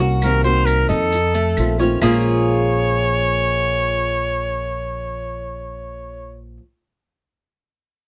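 This is a short cut of Latin music in the Cuban son and guajira style, danceable and warm in mood, in a straight 4/4. A fingerpicked flamenco guitar and a picked Cuban tres with metallic double strings form the accompaniment, the tres playing arpeggios over the guitar, while a dark, woody pizzicato upright bass sits up front. From 0.2 seconds a vintage, punchy trumpet carries the melody with vibrato, playing solo in a pop style and sounding prominent in the mix. Claves and maracas add percussion until 2.1 seconds, the claves distant in a large room and the maracas grainy and mellow. The harmony moves from Cm7b5 to F7 before settling on Bbm7 at 2.0 seconds, with the recording capturing a dry, close 1970s-style studio sound and light reverb.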